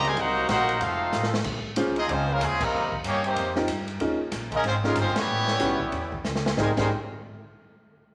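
Set in a wet, large studio reverb, this energetic big band swing excerpt features a brilliant, up-front trumpet section carrying the melody over a veiled, cup-muted trombone section's second line, with a bright trombone section holding sustained chords until 1.4 s, a woody pizzicato upright bass, a swinging drum kit with a punchy kick, an intimate vintage grand piano with audible action noise joining at 1.8 s, band accents along the way, and a drum fill at 6.2 s leading into the closing Abmaj9 chord.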